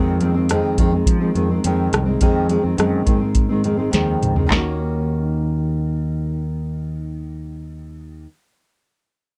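A thumb-plucked nylon-string guitar with subtle chorus and a warbly pitch drift opens this lonely, hazy bedroom-pop fragment at 105 BPM in Eb dorian, alongside a bright, punchy fretless electric bass with analog chorus, both up front. A soft vintage rhythm box, with a deep kick, a rim click, and a crisp snare, metallic hats and handclaps in a short room, plays from 0.2 to 4.6 seconds, closing with a fill just as the harmony shifts from Fm7 to Ebm7 at 4.5 seconds. Guitar and bass then carry on alone in a dry, close 1970s-style studio sound.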